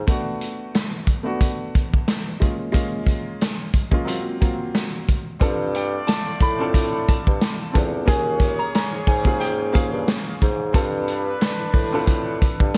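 A swung 90 BPM boom-bap groove in 4/4 drives this nostalgic, confident hip-hop excerpt, built on a vintage acoustic drum kit sitting up front with a punchy kick, a medium-tuned snare and hi-hat, its top gently rolled off in a natural studio room. A smooth, short-sustained grand piano carries the jazzy extended chords throughout, moving from Bm7/A through F#maj7#11 in the opening break before settling into suspended ninth chords. A dark, distant bassoon supplies the bass line in a classical style with light vibrato, returning in earnest at 5.4 seconds alongside a tight, close-miked trumpet section whose soft-attack stabs arrive at the same moment. A small, fingerpicked nylon-string guitar plays the melody from the background, bathed in a diffuse ambient delay that it shares with the trumpets, and it drops out at 10.7 seconds. Light reverb, small-room ambience and vinyl crackle give the whole piece a dusty, vintage patina.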